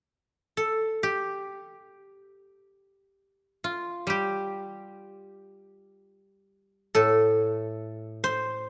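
A bright, silvery guzheng plays alone in this short Chinese traditional excerpt, its fingerpicked strings ringing up front from 0.6 seconds to 8.7 seconds across a range from A2 to C5. The mood is pastoral and flowing, unfolding in free time with a light reverb around the solo plucked strings, and it is cut from a longer piece.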